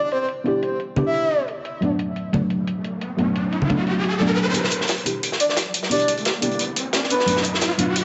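Drenched in wet concert-hall reverb with a softened top end, this uplifting liquid drum and bass excerpt at 176 BPM rides on a deep, nasal chord stab with chorus and dub echo, a breathy flute-like synth lead with vibrato and tape echo, gritty pitched-up electronic hi-hats, bright soft-handed congas and an electronic riser from 2.5 seconds, before a crunchy, saturated breakbeat kit arrives up front at 4.5 seconds as a build-up begins and a filter sweep moves over the stab.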